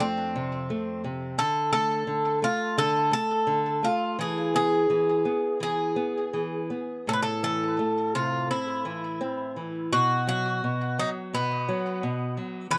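An Irish bouzouki carries the melody from start to finish, its picked double strings ringing with a metallic edge between B3 and B4, set up front and trailed by a tape echo. This is a passionate, longing fado passage of about 12.8 seconds, cut from a longer piece, moving at 85 BPM in 4/4 with a freely breathing rubato feel and tuned to A4 = 441 Hz. Beneath it, a fingerpicked nylon-string guitar supplies the accompaniment, its small, boxy tone also placed up front and sitting a little lower in level than the bouzouki. The harmony moves through F, D5, E, Am and B5, with the E arriving at 4.2 seconds and the Am at 7.1 seconds. Close, detailed microphones and a light reverb give the pair an intimate, warm presence.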